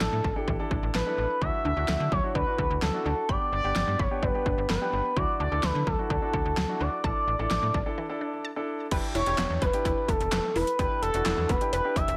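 A smooth, nasal synth lead carries the melody up front in this upbeat yet wistful synth-pop piece at 128 BPM, its sustained tone colored by chorus, delay and vibrato. Beneath it, a polished baby grand piano plays the accompaniment while a snappy FM bass with a metallic attack anchors the low end. The pop drum kit hits hard with a punchy kick, fat snare, handclaps, hi-hat and crash cymbal, all overdriven and given gated reverb. A lush, detuned unison pluck adds bright arpeggios in the background from 0.2 seconds, treated with flanger and delay. The chords move through Asus4, Dadd9 and G before a break at 8.0 seconds, and a new section opens on Em7 at 8.9 seconds, all set in light reverb and a digital ambience in this excerpt cut from a longer piece.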